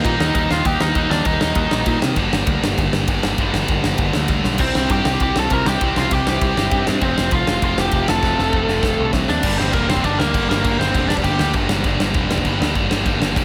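Punk rock at 198 BPM in G minor, angry and raw, where a biting, overdriven lead guitar sits up front with its melody from 0.0 to 2.0 seconds and again from 4.6 seconds, over a crunchy overdriven rhythm guitar in the background, a tight, bright distorted guitar riff, a growling picked bass and a big, punchy acoustic drum kit with bright cymbals that fills at 4.4 seconds and again from 8.2 seconds into the new section at 9.4 seconds, all in a light reverb.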